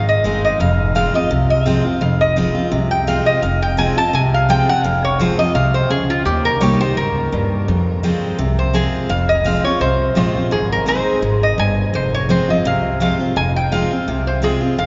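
Bluegrass in F minor at a brisk 169 BPM with a light swing, this short excerpt taken from a longer piece carries a rustic, haunting mood. A lap resonator guitar carries the melody throughout, its mellow, nasal slide tone played with fingerpicks and a steel bar, taking a solo across the first 9.1 seconds before the music moves into a new section. Beneath it, a picked steel-string acoustic guitar supplies full-bodied, fresh-stringed accompaniment, sitting up front alongside the resonator. An upright bass anchors the low end with a woody, growly pizzicato. The harmony circles mostly between Ab and F minor, with a brief turn to Eb, while a cavernous cathedral reverb, captured in a church or concert hall, lends the whole performance a ghostly halo and a softened top end.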